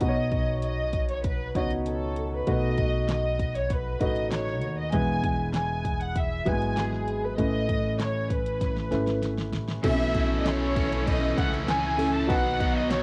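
A straight 4/4 pulse at 98 BPM drives this uplifting, anthemic piano-driven pop fragment, with a punchy pop drum kit of fat snare, metallic hats, handclaps and cymbals, and a drum fill at 8.6 seconds. A deep-voiced concert grand piano sits up front beside a dark, lush violin section carrying the melody with vibrato, while a woody, thumpy pizzicato upright bass anchors the chords from Badd9 through E and Aadd9. At 9.8 seconds a bright, overdriven electric guitar riff and a warm bowed string section in the background join, all heard through light reverb on a homemade cassette recording.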